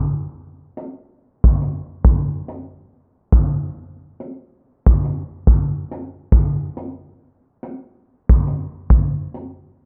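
At 0.8 seconds a vintage brush drum kit enters up front, its punchy kick and brushed hi-hat carrying a slow, dreamy hip hop groove at 70 BPM in 4/4 with a 60% swing on the sixteenths. The acoustic kit sounds natural in a studio room, with a rolled-off top. The whole dry, gritty recording carries transformer saturation and a low-pass filter, and a filter sweep runs across the mellow clip. The drums stop at 9.6 seconds, near the end of this section cut from a longer piece.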